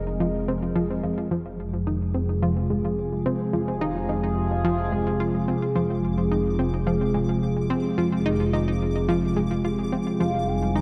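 A bright, airy resonant pad sweeps in over a fat, detuned analog bass and a faint pulsing gated texture, joined at 0.2 seconds by a round, chorused analog pluck riff while the texture fades in from 1.3 seconds, before a nasal, vibrato-tinged synth lead and a very quiet, ringing concert harp arpeggio arrive at 10.2 seconds in this hypnotic, mysterious stretch of sequencer-driven ambient space music, cut from a longer piece and soaked in lush hall reverb.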